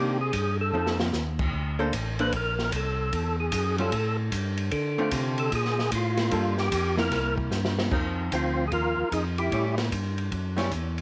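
Light reverb and a small-room ambience frame this soulful, bluesy soul jazz organ trio excerpt, swinging in 4/4 at 150 BPM in F mixolydian. A percussive tonewheel organ carries the melody through a solo until 7.9 seconds and stops at 9.8 seconds, its fat, lightly overdriven tone marked by key click, third-harmonic percussion, chorus vibrato and a slow rotary speaker. A second tonewheel organ plays a full, up-front bass line through overdrive and a slow rotary, while a dark, clean, hollow-body archtop guitar accompanies, and an acoustic drum kit enters at 0.3 seconds with a boomy kick, medium-tuned snare, dark cymbals and brief fills.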